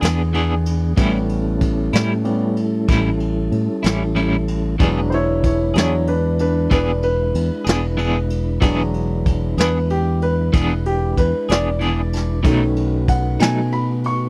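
A rolling twelve-eight shuffle-free lilt sets a slow blues in motion, with a swaggering, soulful mood in this short cut from a longer piece. Vintage brush drums sit up front, pairing a punchy kick and medium-tuned snare with dark ride cymbal and a rolled-off top, while a fingered electric bass lays down a round, dark low end. The concert grand piano takes the solo spot across the whole passage, its smooth, deep-bassed tone carrying a vintage character over the changes from E7 to A7, back to E7 and up to B7. An electric guitar at the edge of break-up adds picked, slightly gritty accompaniment with tremolo before dropping out at 13.6 seconds, and a soft tonewheel organ holds flute-like sustained chords with key click through a slow rotary speaker. The sound is dry and close, in the manner of a 1970s studio session.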